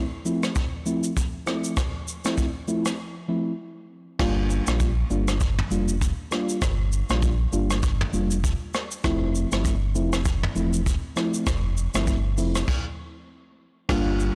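A blown-out, overdriven recording with light reverb and a small-room ambience gives this sultry, mellow afrobeats excerpt a gritty haze. At 99 BPM in 4/4 with a lilting 16th-note swing, it opens on a round, full-bodied FM electric piano playing Fmaj7 accompaniment, its soft, dark tone coloured by chorus and phaser and a faint noise layer. A vintage brush kit enters at 0.3 seconds, up front and mid-forward, with a tight kick, rim click, shaker, toms, hi-hat, crash and dusky, rolled-off cymbals, plus soft clipping on the snare. After a break, a deep sine sub bass with an added octave arrives at 4.2 seconds, sustained and full, as the harmony moves to Gm7 and later returns to Fmaj7. A brief stop near the end marks this fragment of a longer piece, tuned slightly low at A4 = 438 Hz.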